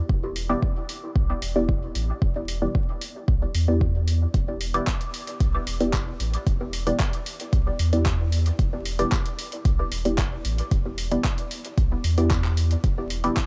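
A muted, detuned sawtooth chord stab with a filter pluck sits up front, sounding Em7 through phaser, dub echo and sidechain pumping, while a tape-warm electronic kick, a quieter deep house kit of handclaps and hi-hat, and a clean, smooth sine sub bass pumping between E1 and E2 drive this nocturnal, cavernous 113 BPM dub techno cut in E minor over vinyl crackle and little reverb.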